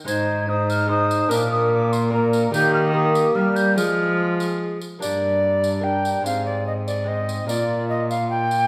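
Classical renaissance-style consort dance in a rustic, courtly mood, moving at 146 BPM in a straight 3/4, cut from a longer piece and heard through a wet recital hall reverb. A distant, airy concert flute carries the melody with vibrato and tongued, expressive phrasing, joined by a mellow tenor recorder second line with woody chiff and crisp attacks, while a clear, present trombone and a delicate, bright fingerpicked lute in the background fill the harmony over a rich, gut-string cello bass that sits up front. A jingly tambourine keeps light time as the chords move from Ab through Bb, Eb and Fm, then Gm, Ab and Bb as the second section begins at 5.0 seconds.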